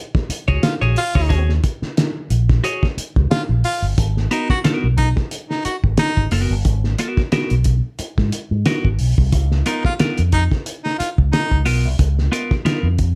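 Lightly reverberant, this cool, funky swung excerpt sets muffled, gritty, cloth-damped drums with a fat snare and tight kick alongside an up-front, amped, bright fingered electric bass with an envelope filter, a clean, compressed electric guitar playing accompaniment, and a breathy, whispered baritone saxophone with light vibrato carrying an intimate second line until 11.6 seconds.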